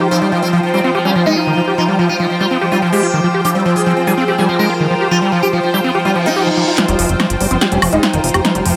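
Psychedelic trance at 144 BPM in 4/4, alien and psychedelic, where a bright, buzzing sitar with phaser, low-pass filter and dub echo weaves over a squelchy, distorted acid bass riff with delay, a very quiet swarming detuned drone on F, and clear, smooth symphonic strings, all set in a lush hall reverb until a reverse cymbal at 6.1 seconds leads into a build-up at 6.8 seconds, where filter sweeps on the sitar and acid bass meet a punchy techno drum fill with hi-hat, snare and woodblock and a fat, saturated analog bass entering at 6.9 seconds, in this short excerpt cut from a longer piece.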